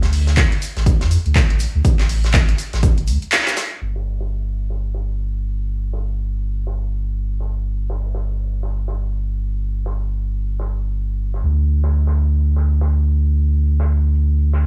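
A 122 BPM deep house groove in 4/4 rolls forward with a 60% swing on the sixteenths, its mood warm and hypnotic in this short cut from a longer piece. A deep, round sine sub bass sits up front from start to finish, moving between G1 and F2 with a fast attack and sustained, mellow notes that pump against the sidechain. An overdriven electronic kick, punchy and re-recorded in a large room, sits at the front of the mix from 0.4 to 2.9 seconds, while an overdriven analog drum machine adds crash, handclaps and hi-hat until 3.9 seconds. Beneath them, a loose acoustic kit of hi-hat, shaker and a medium-tuned snare plays quietly throughout, its small room breathing with sidechain pumping and its hats, snare and percussion shaped by high- and low-pass filtering. A band accent lands at 3.3 seconds, and from 3.8 seconds a filter sweep carries the second section through to the end. The overall sound is dry and close, with little reverb, a low-pass tint and a touch of studio ambience.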